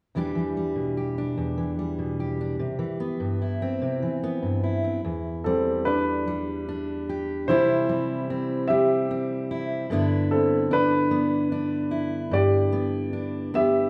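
A fingerpicked steel-string dreadnought guitar opens the passage at 0.1 s, laying down a warm accompaniment over Em7 and Cmaj7. This is a hopeful, intimate acoustic folk-pop ballad in a slow 6/8, moving at 49 beats per minute counted in dotted quarters with a straight feel. At 5.4 s a baby grand piano enters with the melody in its middle register, its tone present and polished, sitting slightly ahead of the guitar while both stay up front. Beneath the tune the harmony moves through Em7, C and then G6, giving the second half a gently brightening lift. The whole performance is bathed in the reverb of a recital hall, a church or concert-hall space with a 1.4-second decay, and this passage from a longer piece ends with both instruments still sounding at 13.9 s.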